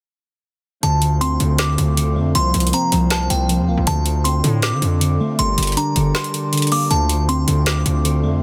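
Hip hop trap in D minor at 158 BPM with a half-time feel, this hard-hitting, eerie passage cut from a longer piece rides a distorted, saturated 808-style bass up front and an electronic trap kit with a woody snare and metallic hi-hats, its kick dropping out between 6.1 and 6.9 seconds. Above them, a delicate, tinkling FM synth bell carries the melody, warbling through chorus, phaser and digital delay, while glassy, airy digital keys with a detuned, filter-plucked edge supply the accompaniment. A soft pipe organ on flute stops sits in the background with a tremulant, holding romantic voicings through a Dm7, C7sus4, Gm progression inside a dense, heavily limited modern master.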